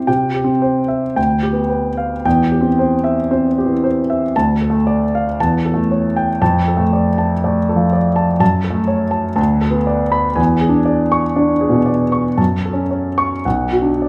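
A solo grand piano opens this brief romantic character piece and carries it alone for its 14.1 seconds, a fragment cut from a longer work. The mood is passionate and stormy, with the slow two-beat pulse stretched and pulled in a free rubato. The playing ranges from deep bass notes up into the high treble, and the harmony wanders from C through D minor before darkening into F-sharp minor and closing on B minor at 13.4 seconds. The piano tone is clear and polished, with long sustain and audible action noise that lends an intimate touch. A generous, wet studio reverb places the instrument further back in a large room, so the clarity of each note blooms into a spacious wash.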